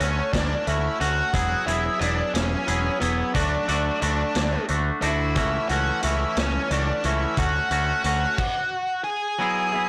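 An octave-fuzz lead guitar, distorted and up front with slapback echo, carries the melody over a clean, scooped, twangy electric guitar riff, a growling overdriven picked bass and a punchy, dark-cymbaled vintage drum kit in this jangly, upbeat indie rock excerpt at 60 BPM in 6/8, moving through Dmaj7, Eadd9, D and F#m7/C# inside a blown-out, overdriven recording with light reverb, until the bass and drums drop out by 8.5 s and leave the two guitars alone until 9.9 s.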